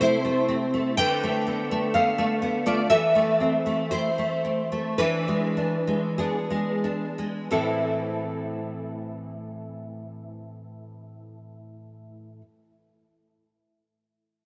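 A fingerpicked nylon-string guitar, full-bodied and up front with an ensemble chorus, plays solemn, melancholic classical accompaniment in A minor, moving in rubato 4/4 between 43 and 67 BPM and slowing through the first 7.5 seconds as the harmony passes from Am/C through Bm7b5/D and Am/E to E7, then settles on Am at 7.5 seconds, the short excerpt soaked in a huge ambient reverb that gives it a dreamy glow.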